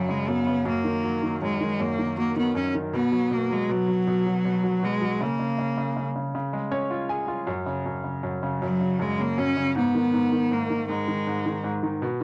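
This home recording on cassette sits in a wet booth ambience with a short reverb, and it is cut from a longer piece. It is a swaying, heartfelt pop ballad in 6/8 at 53 BPM, counted in dotted quarters with a straight feel, in F# major and tuned to A4 = 436 Hz. A single bowed cello carries the melody between F#3 and C#4, close and up front, its tone bright, biting, nasal and intense, with vibrato and an airy bow, colored by cassette tape. A grand piano accompanies from F#2 to G#5, brilliant, polished and present with short sustain, also up front and run through cassette tape, and it plays a fill from 6.3 to 7.5 seconds. The harmony moves from F#5 through D#m/F# and B5 to an unharmonized moment at 5.2 seconds, then on to C#, F#5 and G#m.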